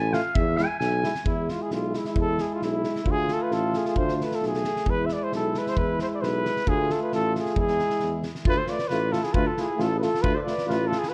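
Balkan folk brass band in a restless, bittersweet 2/4, where a distant, roomy clarinet opens with a solo before a close-miked, up-front cornet takes the melody at 1.3 seconds, carried by a vintage tuba bass, a clear, punchy trombone with light vibrato, a background euphonium and a loose acoustic drum kit with a fat snare and tight kick, all in a dark production with light reverb, while the clarinet returns at 8.5 seconds in this fragment of a longer piece.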